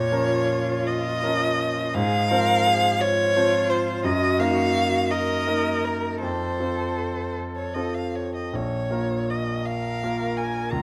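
A rubato 6/8 feel carries this yearning, solemn passage for piano trio, a slow romantic movement cut from a longer classical work. Up front, the violin sings the melody with a warm, expressive tone, vibrato and portamento, while the cello plays a second line with a rich, focused sound and smooth top. The bright concert grand, also up front, gives a brilliant accompaniment with deep bass and long sustain, all heard through close, detailed microphones in a moderate recital hall.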